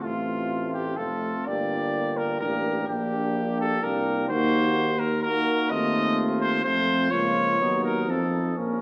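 A clear, up-front trumpet carries the melody in this triumphant, stately classical brass quintet excerpt in 3/4, with a vintage-toned flugelhorn touched by light vibrato on the second line, a mellow French horn and a warm trombone sitting distant in the background as accompaniment, and a vibrato-laden tuba holding the bass, the whole quintet bathed in a wet recital hall reverb and a worn, warbling cassette-tape pitch drift as the harmony moves from F/A through Gm and Ebm to F7.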